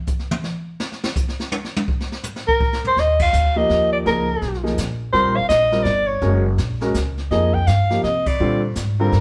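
Playful and sophisticated, this small-group jazz waltz with a swung lilt opens on a roomy, distant brush drum kit with dark cymbals and a boomy kick playing alone. A breathy, whispered soprano saxophone enters up front at 2.5 seconds with light vibrato and a soft subtone, joined at 3.0 seconds by a woody, thumpy upright bass and at 3.6 seconds by an intimate grand piano whose action noise and long sustain can be heard. Rich extended chords move under the melody, and the full band strikes accents together in a moderately reverberant studio room.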